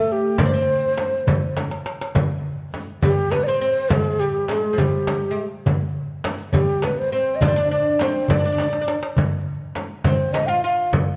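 A breathy, mellow ney carries the melody up front from the start, tongued and expressive with vibrato, while a woody, fretless oud with doubled strings plays a deep, plectrum-plucked second line beneath it in G maqam hijaz. At 0.4 seconds a crisp, saturated metal-shell darbuka and a soft-handed frame drum, the latter placed up front, enter to drive a passionate, festive 6/8 pulse at 68 BPM, with drum fills at 1.6 and 8.6 seconds. This short cut from a longer piece sits in a moderate scoring-stage reverb.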